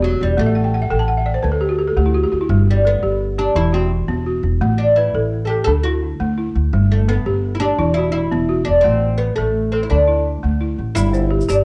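Bright, plectrum-plucked fretless oud with its doubled strings carries a flowing, joyful West African melody in a straight 12/8 over buzzing, dark balafon arpeggios struck with rubber mallets (fleshed out by a fill from 0.5 to 2.5 seconds and touched by tape echo) and a thumpy, woody pizzicato upright bass, all three up front in a small room with moderate spring reverb and the homespun grain of a cassette recording, until a grainy, close tube shaker slips in at 11.0 seconds as this fragment of a longer piece cuts off.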